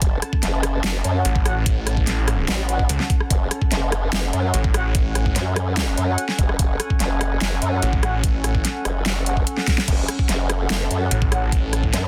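Opening at once on an overdriven, knocking electronic kick, a dubstep kit with a huge up-front snare, crash, hi-hat and rim click, a formant-sweep wobble bass with chorus and a lo-fi, warbling pad that pumps under sidechain, this menacing, chaotic heavy wobble dubstep excerpt in F# minor moves at 146 BPM in a half-time feel while a snarling, growling distorted saw bass bursts in from 1.2 seconds, dark distant brass stabs with dub echo sit in the background, and a drum fill at 9.7 seconds breaks the dense, heavily limited mix.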